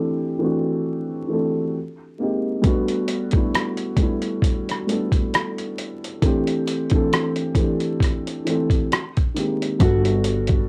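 A swung 16th-note lo-fi hip hop groove at 67 BPM in G major sets a nostalgic, mellow mood, as a soft, boxy felt-muted upright piano with audible action noise, cassette tape colour and a filter sweep carries D9sus4, Abmaj9 and Gmaj9 chords, a gritty, compressed sampler-style drum kit with a thumpy kick, hi-hat and rim click enters up front at 2.6 s, and at 9.8 s a woody, dark pizzicato upright bass and a fingerpicked nylon-string guitar with finger squeak, tape echo and low-pass filtering join briefly before this cut from a longer piece ends, the whole home cassette recording set in light reverb with vinyl crackle.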